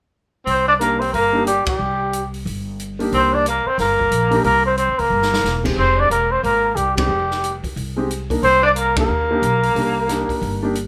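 A moody, late-night slice of small-group swing and bop, cut from a longer piece, opens at 0.5 s as breathy trumpet, tenor saxophone, upright bass and an open jazz drum kit come in together, with upright piano joining a moment later. The dark, whispered trumpet carries the melody up front, its soft attack, light vibrato and scooped notes giving it an intimate feel. Beneath it, the subtone tenor saxophone plays a vintage-toned second line with vibrato and scooped notes. The pizzicato upright bass sounds woody and thumpy on steel strings, while the warm piano adds natural-sounding accompaniment with audible action noise. The drum kit, heard in a small room, brings dark cymbals, a medium-tuned snare and a boomy kick, playing a short fill around 5.1 s. The band hits accents at 1.6, 6.9 and 8.9 s over harmony that moves from Cm9 to Fm9 and back, all set in a moderate studio reverb.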